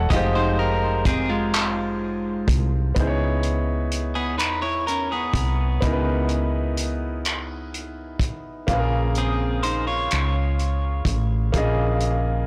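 A blown-out, overdriven studio sound frames this sultry, late-night slow six-eight R&B at 42 BPM, where a brilliant grand piano comps through Fm9, Dbm9 and Bbm7 chords over a growly, round fretless electric bass thickened by transformer saturation, while a clean, picked electric guitar sings a second line through spring reverb and tape echo, and a warm, rolled-off soul kit of finger snaps, handclaps, hi-hat and a tight kick keeps the slow sway.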